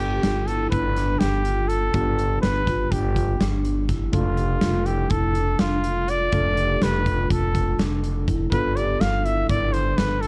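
Progressive instrumental band music in 9/8 with a driving, bright mood: a breathy, whispered trumpet melody with light vibrato and analog delay sits up front over a thumpy, woody pizzicato upright bass, while a clean tine electric piano and a ringing, close-miked vibraphone playing arpeggios stay in the background, and a big rock drum kit with a punchy kick and rolled-off top joins at 0.2 s, set in a dark, lightly reverberant production as the chords move from G7 to Dm/F and back.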